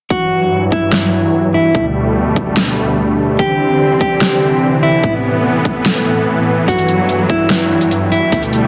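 Heavy wobble dubstep at 146 BPM in a half-time 4/4 feel and E minor, this menacing excerpt pairs a dark, clean, fingered electric guitar melody carrying 12-bit sampler grit and delay with huge detuned supersaw chords that pump under sidechain and a filter sweep, a punchy overdriven kick, an up-front big-room kit with a huge snare and metallic hats from 0.9 seconds, and a deep, moody pad with chorus sitting in the background from 1.3 seconds, all moving through Emadd9, Gadd9/D, Cadd9 and Asus2 under plate reverb and a dense, heavily limited master.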